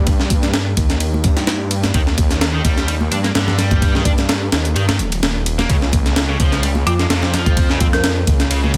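A gritty, compressed sampler-style breakbeat kit sits up front with a thumpy kick, high-tuned snare and ride, driving this energetic, playful breaks cut at 128 BPM with a light 16th-note swing in Eb mixolydian. A thick, menacing detuned saw bass beats beneath it from the start, while a tape-warm electronic hi-hat and close, dry congas struck with hard hands sit in the background. At 1.9 seconds a double-tracked, overdriven electric guitar riff enters with tube saturation and digital delay, and at 6.9 seconds a woody, rustic marimba with hard mallets adds a short melody through an AM-radio filter and delay, as the harmony moves from Eb to Db inside a dense, heavily limited master with light reverb.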